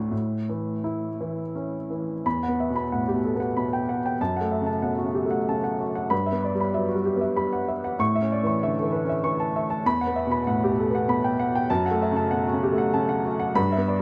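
A lone upright piano, woody and vintage with long sustain, sits up front in a moderate studio room and carries a tape echo, opening on an A chord in this reflective, wistful neoclassical minimalist piece. Moving freely in 3/4 with rubato between 82 and 99 BPM in E dorian, tuned to A4 = 436 Hz, it spans D2 to C#6. At 2.3 seconds the music shifts into a new section built on Emadd9, F#m, Emadd9/G and A, before this fragment of a longer work breaks off at 14.0 seconds.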